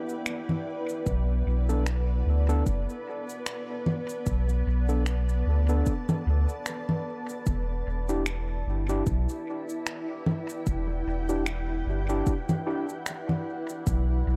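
In this meditative, hazy ambient dub fragment in E minor, a cloudy, detuned granular pad with built-in reverb sustains Em7 and Bm7 chords from the start alongside a very quiet bubbling, resonant sawtooth texture with chorus that stops at 7.5 s. A swung 75 BPM groove in 4/4 of tape-toned electronic cabasa, finger snaps and congas with dub echo enters at 0.1 s, joined at 1.1 s by a deep, layered electronic kick and a round, soft sub bass with tube saturation, while a barky, gritty electric piano through a combo amp plays stabs with dub echo.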